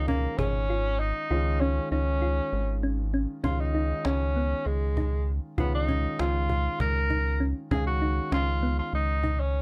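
A clear tenor saxophone opens this driving, intricate progressive instrumental at 0.0 s, carrying the solo melody up front with jazz-style vibrato over a warm concert grand piano and a rubbery square-wave bass. The piece moves in an uneven 7/8 at 197 BPM counted in eighths, with a straight feel in D-flat mixolydian, and this passage is cut from a longer work. The bass sits prominently with a hollow, bouncy tone, a quick filter pluck and a moving notch. The piano supplies open, long-sustaining accompaniment with deep low notes. From 0.1 s, a round, tine-like synth pluck with a chorus effect adds mellow, warbling arpeggios in the background, while a woody cajon with faint snares plays softly behind it; its kick and snare drop out from 1.3 to 3.4 s. At 3.4 s the harmony shifts from D-flat to D-flat seven, all within a dark, dry production.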